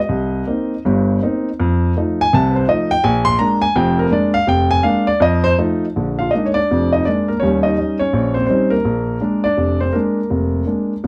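Solo jazz piano in a playful, warm mood, this short fragment from a longer piece swings at 165 BPM in 4/4, with a loose, rubato feel and uneven beats over a Bb mixolydian center. A lone grand piano carries everything from 0.0 to 11.1 seconds, ranging from a deep F1 up to C6. Its tone is intimate and natural, placed up front, with the action noise of the instrument clearly audible beneath the notes. The harmony moves from Cm7 to F7 and Bb7 in the opening stretch, then shifts at 6.0 seconds into a second section built on Bb7 and Eb7 before returning to Bb7. A moderate small-room reverb gives the piano a close, unfussy sense of space.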